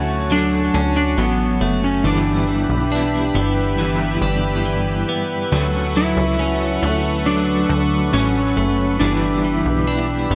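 At a slow 69 BPM in a straight 4/4, this blissful, ethereal dream pop clip in D major drifts gently through about ten seconds of a longer piece. A plucky analog bass sits up front with a punchy, funky, wave-folded tone, its fast attack decaying quickly, while a warm analog pad holds smooth, warbling vintage chords high above under chorus. A clean, compressed electric guitar picks arpeggios through subtle chorus and dub echo, and a hollow-body semi-hollow electric guitar plays accompaniment in the background, shimmering with tremolo and ensemble chorus. From 0.3 seconds an electric slide guitar carries the melody with a slightly broken-up, fingered tone, trailing dub echo of its own. The harmony alternates between Dmaj7 and G6, and the echo-heavy mix sits in a moderate echo chamber reverb with a digital ambience that lets the parts blur softly together.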